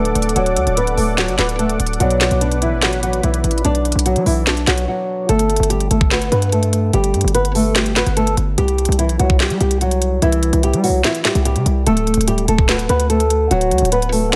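A dark, boxy, thumb-plucked flamenco guitar with finger squeak leads this dreamy, triumphant half-time trap cut in G major at 146 BPM, its tone softened by a low-pass filter and set up front with a punchy, heavy 808-style bass and an electronic trap kit of knocking kick, sharp snare, crisp hats and handclaps, while a very quiet, vintage concert grand piano and a moody, detuned sawtooth pad with chorus fill the opening until a short break ends at 5.3 seconds, all inside a digital ambience.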